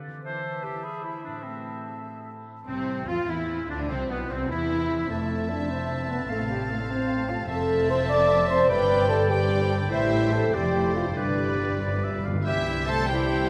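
Classical orchestral music in 6/8, a graceful yet dramatic romantic movement cut from a longer piece, cheerful in mood and bathed in the long, echoing reverb of a vast cathedral-like space. Mellow French horns hold sustained chords over a ringing, thumb-plucked harp, while a bright clarinet, a clear close-miked oboe and a pure flute weave second lines; at 2.7 s the strings enter, smooth violins with light vibrato carrying the melody above lush violas, rich cellos and expressive double basses. Soft, round timpani join at 8.7 s with a fill before a very quiet, bright trumpet section stabs in at 12.5 s as the harmony settles on C major.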